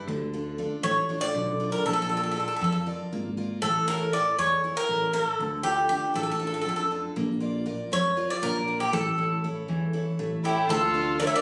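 Greek folk in a driving, dramatic vein, this short cut from a longer piece moves in a brisk 7/8 with a straight feel. A bright, picked steel-string dreadnought guitar carries the accompaniment from the start, its full body touched by finger squeak, while a woody, pizzicato upright bass sits underneath. From 0.8 seconds the bouzouki takes the melody up front, its metallic double strings partly doubled at the octave. The harmony cycles through D minor, B-flat and A before returning to D minor. At 10.4 seconds a single dark violin enters close and up front with a second line, bowed with a soft attack, vibrato and expressive portamento. Moderate studio reverb surrounds the band, and the sound has the character of a phone recording made in the room.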